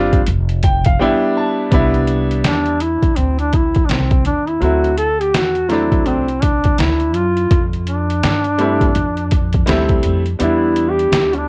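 This smooth jazz-hop excerpt opens on a clear concert grand piano with deep bass and a vintage cassette-tape tint, alongside a woody pizzicato upright bass with steel strings and a gritty, overdriven trip hop sampler-style drum kit. The kit is compressed and pitched down, with a thumpy kick, medium-tuned snare and hi-hat sitting up front at an unhurried 83 BPM in 4/4 with a lazy 16th-note swing. The piano plays a fill from 0.3 seconds over a rootless Bb69 moving to G69, and a brief silent gap at 1.0 seconds sets up the main groove in C major, moving through Cmaj9, D9, Fmaj9 and Em7. At 2.5 seconds a mellow duduk enters up front for a folk-style solo with vibrato and scooped notes, its tone band-limited and aged by cassette tape and an analog delay. The whole piece sits in a light reverb with a homespun, warm cassette feel, and the clip is cut from a longer piece.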